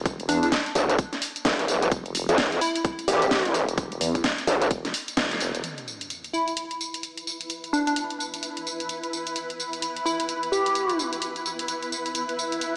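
Soaked in a dreamy hall reverb with a small-speaker sound, this gritty, aggressive bass house excerpt at 129 BPM in E phrygian, with swung 16ths, opens on a drop where a nasal, saturated vowel-sweep wobble bass, joined at 0.8 seconds by a growl bass, pumps beneath a tight electronic kick drum and a garage drum kit of cracking snare, hi-hat and tambourine, while a punchy, detuned plucky unison lead with tape echo carries a catchy line. The growl bass and kick drop out shortly before 5.6 seconds, when a sub drop and swell lands as the wobble bass falls away. From 6.9 seconds a cloudy, evolving granular cloud pad fills out the rest alongside the kit, with the lead continuing until 11 seconds.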